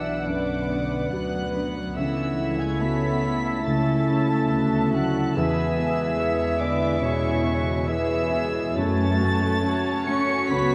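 A full orchestra opens together in this moving, hopeful cinematic excerpt, with a high violin section singing the soft-edged, floating melody over a gentle rubato feel, while a clear oboe, a hollow, close-miked flute and a distant, mellow clarinet weave second lines alongside a rich, recessed second violin section. Beneath them sit a felt-muted upright piano with audible action noise, a very quiet viola section and a background French horn section holding sustained chords, while a ringing, fingerpicked concert harp spreads arpeggios across a broad range and dark, intimate cello and double bass sections bowed sul tasto anchor the low end. The whole ensemble sits in a vast, echoing cathedral reverb tinged with vinyl crackle as the harmony moves from Bm through A/C# and E to F#m.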